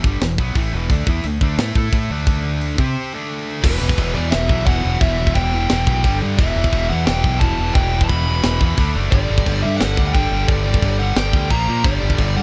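A growling, overdriven fingered bass sits up front from the start, paired with a tight acoustic drum kit whose high-tuned snare, firm kick, crash and hi-hat carry a mid-forward punch with a rolled-off top. This is dark, relentless heavy metal in E minor at 175 BPM in a straight 4/4, cut from a longer piece. Two bright, picked high-gain guitars play the riff in the background, one of them with a scooped tone. After a short break at 3.0 seconds, a smooth, dusky overdriven lead guitar takes the melody from 3.6 seconds, while a double-tracked third rhythm guitar and a very quiet bowed string section with soft, sul tasto vibrato chords fill in beneath. The harmony moves mostly between E minor and power chords on D, C and G, with a brief A# near the end, all in a dry studio sound.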